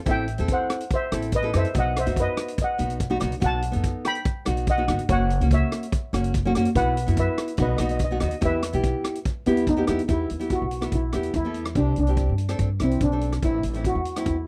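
Dramatic and tense, this 144 BPM calypso in E harmonic minor, settling into E minor at 10.1 seconds, sets a mellow, shimmering double-seconds steel pan melody with slapback echo against fingerpicked full-bodied nylon-string guitar, woody pizzicato upright bass on gut strings, and a vintage drum kit of punchy kick, hi-hat and rim click, all captured in a dry, close 1970s-style studio sound with light reverb.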